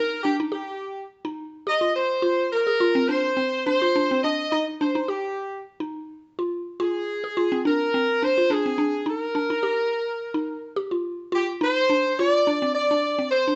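Intense and hypnotic, this afrobeat passage moves at 105 BPM in 4/4 with a light sixteenth-note swing, set in F dorian and cut from a longer piece. A punchy, present horn section carries the melody up front with light vibrato, while a woody, round, mallet-like synth pluck with chorus spins arpeggios beneath it, both playing throughout over chords that rock between Ebadd9, F5 and Fm before shifting to Cmadd9 at 11.3 seconds. The band sounds as if playing live in one large studio room, with moderate reverb and a top end that stops around 8 kHz.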